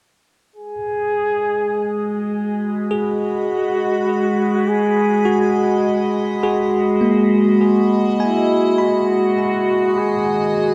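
A mellow flugelhorn opens the excerpt at 0.6 seconds, playing a reflective, melancholic melody in a classical style with light vibrato and tape echo, sounding distant inside a vast cathedral reverb. A morphing wavetable pad with a slow attack, phaser and its own reverb joins at 1.5 seconds with sustained chords. A clean, bell-like electric piano adds arpeggios with tape echo from 2.9 seconds. This slow ambient piece at 51 BPM in G# minor rests on a G#m7 chord before moving to D#m, all in a dark, warm production.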